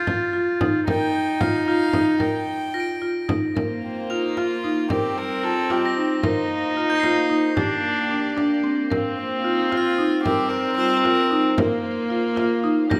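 Contemporary chamber music in an urgent, restless 5/8 at 225 BPM in eighths, with a close, nasal violin carrying the melody in period gut-string style alongside an up-front, reedy viola second line, while a dark, woody marimba with medium hard mallets runs arpeggios and a small, dry frame drum struck with hard hands drives the pulse. Shimmering, bell-like crotales ring faintly in the background, and from 3.6 seconds a studio string section with light vibrato adds sustained chords over shifting harmonies such as Fsus4, Eb6 and Gm. The violin drops out at 6.1 seconds and returns at 9.2 seconds, all within a recital-hall reverb in this passage cut from a longer piece.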